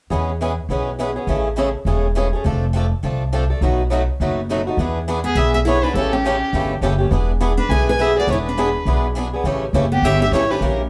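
A clear, focused violin with vibrato carries the melody from 5.3 seconds over two boxy, bright swing-picked acoustic guitars, a woody, thumpy pizzicato upright bass and a picked steel-string guitar line in this lively jazz manouche cut at 206 BPM, moving from E major into E mixolydian around 4.8 seconds with a short club reverb heard from further back in the room.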